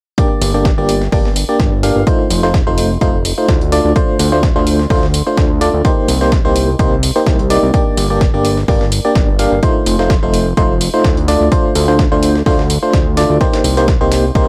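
Bittersweet and soulful, this piano house passage is led by a biting, barking FM electric piano riff, up front, with chorus, tremolo, digital delay and sidechain pumping, cycling through Gm, F7, Dm7 and Cm7. A punchy, tape-warm electronic kick sits under a gritty, compressed sampler-style kit of high-passed hi-hat and snare, joined by an analog electronic hi-hat from 0.4 seconds. At that point a fat, detuned sawtooth bass with a wave-folded edge and a filter sweep enters, pumping with the sidechain in a dry mix.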